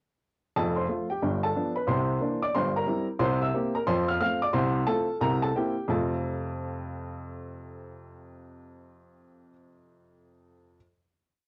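Heard through the soft grain of cassette tape and a reverberant small room, this is a short home recording of solo stride piano with an exuberant, swinging mood. The upright piano sits up front with a woody tone and short sustain, and it plays alone from 0.6 s to 10.8 s, ranging from F1 up to F6. At a brisk 180 BPM in 4/4 with swung eighths, it carries the tune in octaves over a stride bass. The harmony stays in F major, moving from F through G7, C9 and C7 back to F. From 5.9 s the piece rests on a final F chord that rings into the room's reverb, making this a complete miniature.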